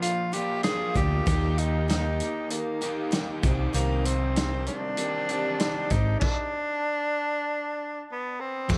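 A warm tenor saxophone carries the melody up front with light vibrato and a smooth top, its pop-style line trailing analog delay through this dusty, reflective fragment cut from a longer folk rock and heartland rock piece in C minor at 97 BPM in a straight 4/4. Beneath it, a loose indie drum kit sits up front with a punchy kick, a medium-tuned snare, crash and hi-hat, its saturated, gritty sound rolled off at the top and also fed through the delay. A crunchy, double-tracked overdriven guitar plays a riff while a bright, boxy picked twelve-string acoustic shimmers in the background with octave-doubled strings and a touch of finger squeak, both echoing through analog delay. A dark, round hollow-body short-scale electric bass enters at 1.0 seconds, and a reedy, lightly overdriven electric piano slips in very quietly at 3.7 seconds. The chords move from Bb to Eb to Cm before the band hits a stop at 6.2 seconds, all of it set in moderate spring reverb for an echo-heavy mix.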